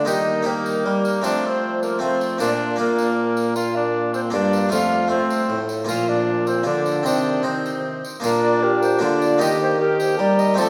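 An airy tenor recorder carries the melody of this solemn, courtly Renaissance-style consort dance, its wooden, straight tone marked by a tongued chiff and heard close up. It moves in a straight 3/4 at 154 BPM, cut from a longer piece. Beneath it, a warm cor anglais sings a second line, while a plucked Italian-style harpsichord with a single set of strings and a distant trombone with light vibrato fill in the accompaniment. A dark, soft-edged bassoon anchors the bass, and a jingly tambourine sits quietly in the mix from 0.1 s, its sound small and bright. The harmony turns through Eb, F, Bb and C minor, the opening phrase returns at 8.2 s, and the ensemble is bathed in a wet church reverb.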